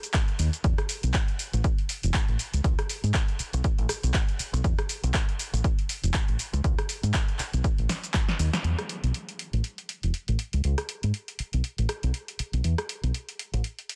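A swung 4/4 groove from a punchy analog drum machine, with handclaps, hi-hat, rim click, shaker and snare, its hats and percussion pumping against the sidechain and a short room on the snare, clap and hats, drives this sunny, feel-good filtered disco house fragment, where an up-front electronic kick thumps until 8.3 seconds while a dark, round, tube-saturated fingered electric bass pumps through a low-pass filter with a filter sweep in each half, a drum fill from 7.9 seconds and a band accent at 8.5 seconds lead into the second section, and the dry mix sits in a dense, heavily limited modern master.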